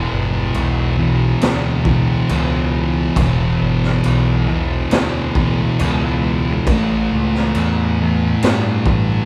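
Two dark, fuzz-drenched electric guitars open this brooding, hypnotic stoner and doom metal excerpt at a slow 68 BPM in 4/4, one riffing up front while the other sits in the background, joined by a growling, overdriven picked bass in the low register. A raw garage drum kit enters at 0.5 seconds with a punchy kick, high-tuned snare and crash cymbal, its gritty, saturated sound rolled off at the top. The band plays live in one room with moderate large-studio reverb, holding an E5 chord before moving to A at 6.7 seconds.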